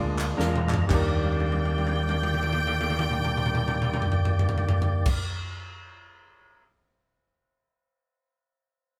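Uptempo gospel at 113 BPM in Eb major, this short excerpt carries a reverent, soulful mood over a swung 4/4 feel. A clear, close-miked saxophone section sings the melody with jazz-style vibrato, while a baby grand piano adds natural accompaniment and a fat tonewheel organ holds sustained chords through a fast rotary speaker, its key click audible as it opens with a brief fill. A round, dark fingered electric bass sits punchy and amped underneath, and crisp, band-limited group handclaps lend a vintage, human touch. The acoustic fusion drum kit is up front and gritty, with bright cymbals, a high-tuned snare, a punchy kick and a pumping small-room sound, playing fills across most of the passage. The harmony moves from Bb7 to Ebmaj7 at 0.9 s, the band sounds as if playing live together in a stone room with moderate reverb, and the drums carry on alone until 6.6 s after the other parts stop.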